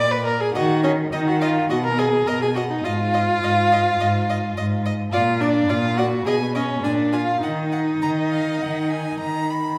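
A string quartet starts together in a quick, stormy and dramatic classical-period movement cut from a longer piece, its pulse pushed and pulled with rubato as the harmony passes from Bb through Ebmadd9 and Fm7/Ab before breaking off at 7.4 seconds. A clear, smooth, even violin sings the melody with vibrato, a rich second violin traces a line in the background, a focused viola plays close, up-front accompaniment, and a warm, distant-sounding cello anchors the bass, all bowed by single players. The wet reverb of a recital hall surrounds the quartet, with the strings ending just before 10 seconds.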